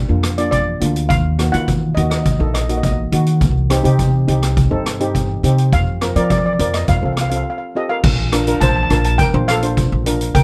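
Heard through close, detailed microphones with little reverb, this short calypso excerpt sounds dry and intimate. It moves at 104 BPM in a straight 4/4 in Bb major, with a carefree, bouncy mood. A lead steel pan played with medium rubber sticks carries the melody up front, its metallic shimmer spanning G4 to A5. Beneath it, a double-seconds pan struck with soft rubber sticks adds a mellow, dark, smooth accompaniment. Pizzicato upright bass on steel strings gives a woody low end from Bb1 to F3, while an up-front street-band drum kit, caught in a small room with a boomy kick, dark cymbals and a rolled-off top, supplies crash, hi-hat, kick and rim click. The harmony travels from Bb through Ebm, Cm and Fsus4 to F, then a brief break at 7.5 seconds leads into a new section at 8.0 seconds that opens on Bbadd9.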